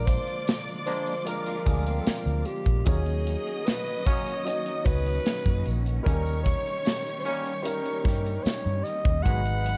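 Silky and cinematic, this lush 1970s-style soul piece sets a raspy, gritty alto saxophone melody over a round, foam-muted electric bass and a punchy studio drum kit, both up front in the mix, with a faint, jingly tambourine in the background. A symphonic violin section carries a bowed second line above a concert grand piano accompaniment with deep bass, while a dark studio string section holds sustained chords behind them and a bright, tight trombone section adds jazz-style stabs from 0.9 seconds. From 1.5 to 2.8 seconds, a twangy, lo-fi electric guitar through a small old amp plays a brief riff with harmonic tremolo, and studio reverb gives the production a warm, dim sheen.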